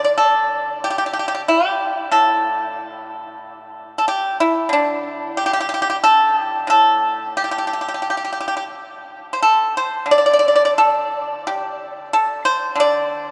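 Freely rubato over a nominal 91 BPM in 4/4, this pastoral, elegant Chinese traditional fragment from a longer piece features a solo pipa, bright and percussive under fingerpicks and placed up front, ranging from A2 to D5 in the D shang mode for 13.3 seconds within a long cathedral-like reverb, in a recording whose top end stops at 10.5 kHz.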